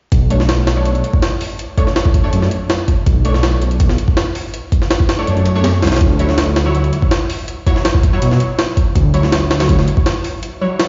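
A gritty, sampler-style jungle drum kit sits up front, overdriven and compressed, its thumpy kick, high-tuned pitched-up snare and hi-hat driving the track. This is a dark, nostalgic drum and bass cut at 163 BPM in 4/4 with a straight feel, in B minor and tuned to A4 = 438 Hz. Beneath it, a deep, rumbling detuned saw bass with a sine layer sustains between B1 and B2, saturated and beating, until 9.9 seconds. An orchestra-hit-like synth stab, bold and layered with a noise layer and filter sweep, punches in lower in the mix, colored by phaser, cassette tape, dub echo and its own reverb. The harmony moves from Bm9 to Dmaj9 at 6.0 seconds, and the whole fragment, cut from a longer piece, carries large studio reverb, vinyl crackle and a muffled top end, as if played on a big sound system in a bare room.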